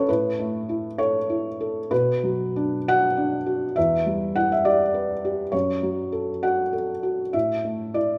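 A felt-muted upright piano plays alone in this brief, wistful and melancholic neoclassical minimalist excerpt, its soft, mellow tone with thick felt and short sustain sitting intimate and up front in a moderate stage reverb as it drifts in a rubato, unevenly felt 6/8 through chords of A, Bm, Em and F#m before settling on A5 at 7.3 seconds.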